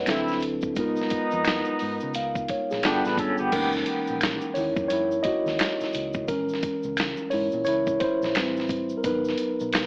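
A mellow tine electric piano and a dark, round, foam-muted electric bass open this sultry neo-soul R&B excerpt at 87 BPM, with a lazy 16th-note swing in 4/4. Almost at once a dusty, sampler-style drum kit arrives with a thumpy kick, a medium-tuned snare, hi-hat and crash, gritty and compressed as if re-recorded in a large room. Finger snaps, tube shaker and group handclaps sit saturated in the background. A vintage jazz-style horn section adds up-front stabs with light vibrato until 3.2 seconds, and a slightly broken-up, lo-fi electric guitar slips in a brief picked line with tremolo and tape echo around 2.9 seconds. From 3.5 seconds the clean, direct electric piano takes a soulful solo over chords moving from F#13 through A#m7b5 to Am7 and G#m7, all wrapped in moderate reverb, vinyl crackle and an AM-radio haze.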